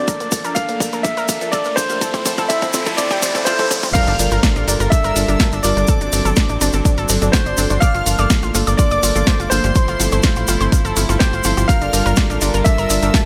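A punchy, tape-toned electronic kick drives this emotional progressive house passage in G dorian at 124 BPM, where a build-up with a drum fill, a background riser, noise sweep and filter sweeps on the nasal, chorused analog pluck arpeggios and lush detuned unison pluck stabs gives way at 4.0 seconds to a drop with an impact, as a brilliant, intimate grand piano melody with dub echo floats over rich, earthy chamber strings, a round, deep analog bass with tube saturation, a house kit with a cracking snare and filtered hats and crash, a grainy tube shaker, and, from 3.9 seconds, an airy, dreamy lead high in the background, all pumping to the sidechain except the kick, snare and shaker.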